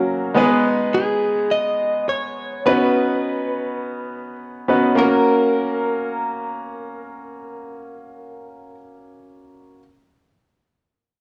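A bright concert grand piano, brilliant and up front with deep bass and short sustain, accompanies a clean, picked electric guitar melody with a scooped, compressed tone, both colored by cassette tape and plate reverb with analog delay on the guitar, in this romantic, uplifting pop excerpt in F# major at 104 BPM, moving from G#m through Badd9 to F# at 5.0 seconds before the guitar stops at 8.7 seconds.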